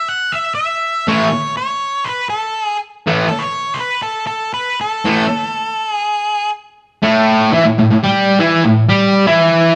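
A bright, double-tracked and compressed fuzz guitar riff enters at 1.1 s and carries this swaggering, rowdy rock fragment to its close, alongside a darker octave-fuzz lead guitar melody that opens the piece and stops at 6.5 s, both parts distorted and up front, while a moderate large-studio reverb gives the feel of a band playing live in one room.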